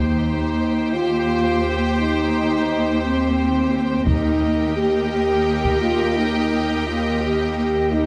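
A moderate scoring-stage reverb gives this short cut from a longer cinematic, epic orchestral film score a spacious hall around it, moving at 57 BPM in a straight 6/8 with a relentless, heroic mood. Up front, the cello section holds a rich, smooth-topped bowed bass on Eb2 with vibrato, while a mellow French horn section sustains chords in the middle register, moving from Cm over Eb to Eb at 4.1 seconds. Above them, the viola section plays a focused, lush accompaniment and the violin section carries an intense second line that sits distant in the mix. The double bass section adds an even, background weight on Eb2, sounding only briefly at the start until 0.5 seconds and again from 4.1 to 4.7 seconds. Solo taiko drums struck with heavy sticks enter at that chord change and sound until 6.0 seconds, close yet set back behind the orchestra.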